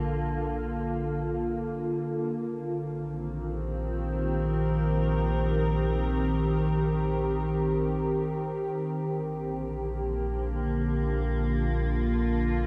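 Peaceful and warm, this ambient excerpt drifts in free time in Bb major as an up-front, detuned wavetable pad morphs through sustained Bbmaj7 and Cm7/Bb chords with chorus and its own reverb, while a round, deep analog bass holds a dark Bb1 beneath, the pair set in a vast, echoing space.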